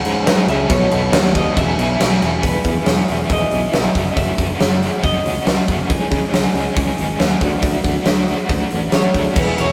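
A rough rehearsal-room recording with light reverb and warm saturation, this wistful, jangly indie rock excerpt moves at a straight 138 BPM in 4/4 over chords such as C#m, Badd9, E, F#m and Dmaj7. Up front, a big acoustic drum kit in a bright stone room drives with a fat snare, punchy kick, hi-hat, ride and crash. A biting, double-tracked overdriven guitar with tremolo plays the riff over a growly, direct picked bass, while a clean picked electric guitar carries the melody until 5.6 seconds and returns at 9.0 seconds.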